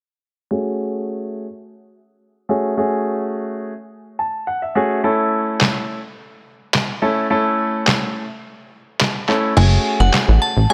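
A clear baby grand piano opens this confident, bittersweet dance-pop excerpt in F# minor at 106 BPM, playing F#madd9 and A chords through a low-pass filter sweep and adding a short fill before a muffled, pitched-down sampler-style kit of snare, handclaps and crash cymbal arrives at 5.6 seconds. At 9.6 seconds a punchy, funky analog bass with a plucky sawtooth and square-wave tone steps up front beneath a glassy FM synth bell melody coloured by chorus and phaser, all set in light digital reverb.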